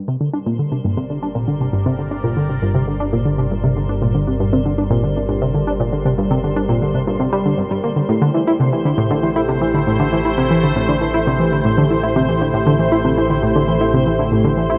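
Ambient, sequencer-driven space music with an expansive, cosmic mood, cut from a longer piece: a tight, nasal sequenced synth riff with detuned sawtooth and pulse tones and a filter pluck drives up front through chorus and tape echo. An airy, bright resonant pad fades in with evolving sustained chords, while a twinkling granular texture adds sparkling octave-up FM shimmer and an analog drone bass with pulse-width modulation and a moving notch enters at 1.3 s. Everything sits in a huge ambient reverb, and the harmony moves from Gm to Am7 at 8.1 s.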